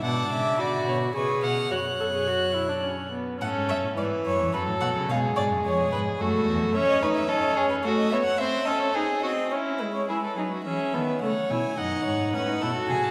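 A nasal, airy-bowed period violin carries the melody of this elegant, lively baroque-style fugue excerpt for string quartet in F# minor, moving at 107 BPM in 3/4. Beneath it a reedy second violin and an up-front viola with light vibrato play their gut-string lines. A rich, close cello bass falls away at 6.7 seconds and returns at 10.1 seconds. The quartet rings out in a church's long, wet reverb.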